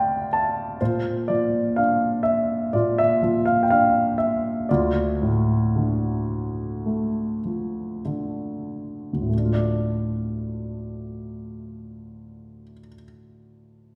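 Rubato in 4/4, drifting between 45 and 63 BPM, this reflective, dark classical passage for solo grand piano opens with a brief fill before slowing down from 0.8 to 9.3 seconds, moving from D minor to B-flat and back to D minor, then turning to a new passage until 14.0 seconds. The piano is warm and up front, with short sustain, spanning D2 to A5, and it sits in a wet recital-hall reverb of a church or concert hall. The recording is cut from a longer piece.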